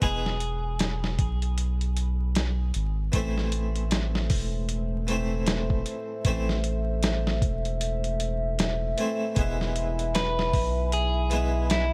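Hypnotic, smoky trip hop with a swung 16th-note feel, where a gritty, thumpy sampler-style drum kit and a deep, round dub sub bass sit up front beneath an airy, plucked harpsichord with tremolo, a moody, detuned analog pad with chorus entering at 3.1 seconds, and a twangy, slightly broken-up electric guitar melody with dub echo heard at the opening and again from 10.2 seconds, all over a bed of vinyl crackle.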